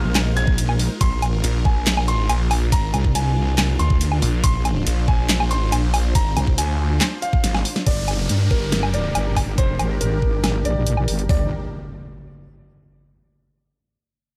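A snarling, distorted saw bass growls up front from the first second alongside a saturated wobble bass with chorus, driving this heavy, aggressive slice of half-time wobble dubstep cut from a longer piece. Two layered electronic drum kits share the beat, one with snare, handclaps, hi-hat, ride and woodblock, the other with kick, toms and hi-hat, and a drum fill at 7.4 seconds closes the opening drop. Above them, a lush supersaw pad holds sustained chords through a phaser and sidechain pumping, while a vintage-toned grand piano carries a smooth melody in the upper register with delay. The distorted saw bass stops at 7.6 seconds, and from 7.9 seconds a filter sweep moves across the wobble bass as a downlifter and impact arrive and the harmony settles on G minor. The mix is dry, with the basses and the kick-and-tom kit pushed forward and the piano and pad sitting further back.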